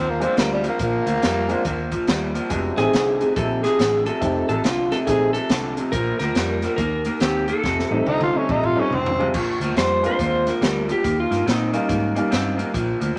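A growling, raspy tenor saxophone, a slightly broken-up, lo-fi electric guitar riff through a small old amp with spring reverb, and a dark, foam-muted electric bass open this laid-back, swaggering electric blues shuffle in Bb major at 140 BPM, joined by a woody upright piano and an airy, polished big-band drum kit with a punchy kick, before a clean lap steel guitar carries the melody with volume swells from 2.8 seconds, a drum fill arrives at 7.6 seconds and a slide guitar solo takes over at 9.3 seconds over Bb9 and Eb9 chords.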